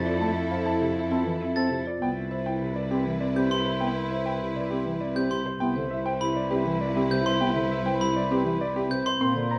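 In a straight three-beat pulse, this hypnotic, bright minimalist classical excerpt sets a worn, present concert grand piano melody over woody marimba arpeggios, a mellow bass clarinet, a lush bowed string section with vibrato, a smooth solo cello bass and a clear French horn second line in the background, while a bell-like, ringing glockenspiel joins with arpeggios at 1.6 seconds, all shifting from Fmaj7 to Cmaj7 in a close, detailed sound with light reverb.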